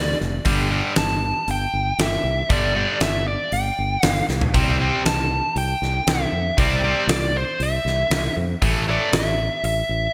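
A biting, overdriven lead guitar with delay opens this driving, menacing hard rock excerpt alongside a growly fingered electric bass, both up front in the mix. A huge arena drum kit with a fat snare, punchy kick and gated reverb joins at 0.2 seconds, and a tight, double-tracked distorted rhythm guitar enters at 0.5 seconds with a picked riff, while a drum fill lands at 4.3 seconds. The lush hall reverb and bright 1980s-style digital production give the whole a big, glossy arena sheen.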